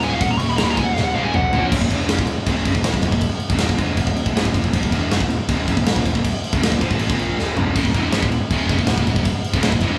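Recorded as a band playing live in one room with light reverb, this heavy, aggressive heavy metal cut in Eb minor charges ahead at 159 BPM. A dark high-gain lead guitar solo opens it and ends at 1.6 seconds, while a bright, distorted rhythm guitar riff and a scooped high-gain guitar drive underneath, the scooped guitar dropping out and returning at 7.8 seconds. A growly fuzz bass supports the riffs, and an up-front acoustic rock kit with a punchy kick, medium-tuned snare, crashes, splashes and tom fills pounds through the track.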